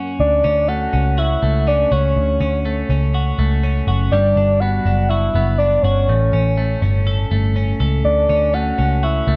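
A soft, octave-layered synth lead with a full, detuned tone, chorus and vibrato carries the melody over a bright, twangy twelve-string electric guitar whose spring-reverbed arpeggios open alone at 0.0 seconds, joined at 0.2 seconds by a dark, round, foam-muted picked bass set up front, in this breezy jangly indie pop cut at 122 BPM in D major moving through Dmaj7, Gmaj7 and A7 under light room reverb.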